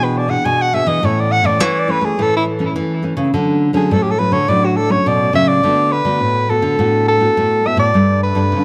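A smooth-topped soprano saxophone carries the jazz-style melody up front, soloing through the opening 5.6 seconds with plate reverb and tape echo, in this joyful, sunny samba and choro excerpt in D major at 104 BPM. Beneath it, a full-bodied, deep classical nylon-string guitar is fingerpicked up front as accompaniment, while a second fingerpicked nylon-string guitar supplies the bass line. The harmony moves through E7, A and Dmaj7 before shifting to D6 and Gsus2 as a new section begins at 5.6 seconds, all set in a moderate studio reverb.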